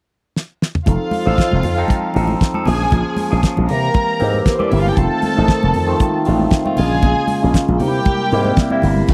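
A growly slap bass run through an envelope filter drives this glamorous disco excerpt at 117 BPM, sitting up front beside a damped 70s drum kit with a fat snare and tight kick that opens with a short fill at 0.3 s. A barky tine electric piano with phaser carries the F7, Bbm7 and C7 changes, while a lush, woody bowed string section adds a second line and very quiet, thin-skinned congas add percussion underneath. The dry, close 1970s-style studio sound is cut off at 9.1 s just as a distant, dark French horn section enters, barely audible.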